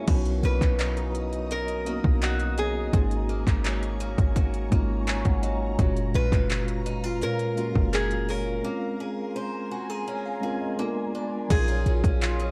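Dark, warm production wrapped in digital ambience frames this short cut from a contemporary R&B piece, sensual and late-night at 84 BPM in straight 4/4. Hard-clipped kick, crisp hi-hats, handclaps and crash from a tape-toned trap kit, re-recorded in a large room, sit up front beside a deep, boomy, sine-like 808 bass with a fast attack and decaying notes. A mellow tine electric piano, heard through its built-in speakers, carries the accompaniment and steps forward with fills from 4.7 seconds. Around it, a woody, boxy archtop guitar with old strings picks arpeggios through a digital delay, while high above, an ethereal, detuned sawtooth pad with a noise layer breathes through ensemble chorus, phaser, reverb and sidechain pumping. From 0.4 seconds a lap resonator guitar, played with fingerpicks and a slide, sings the melody in a metallic, nasal voice, also touched by delay. The harmony moves from Bmaj7 through Ab9sus4 and Gbmaj7 to Bbm9, with a break from 8.6 seconds passing through Bb7b9 before settling on Ebm9/Bb.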